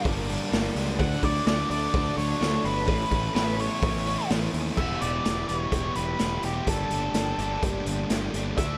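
An octave-fuzz lead guitar carries a dark, distorted melody over a biting overdriven riff, a sludgy background guitar with subtle chorus, a growling overdriven fingered bass, a very quiet silky string pad and a raw, saturated garage drum kit sitting up front and entering at 0.1 seconds, in this carefree, jangly indie rock excerpt at 126 BPM, dry as it moves from Gmadd9 through D and Aadd9 to Em around 4.8 seconds.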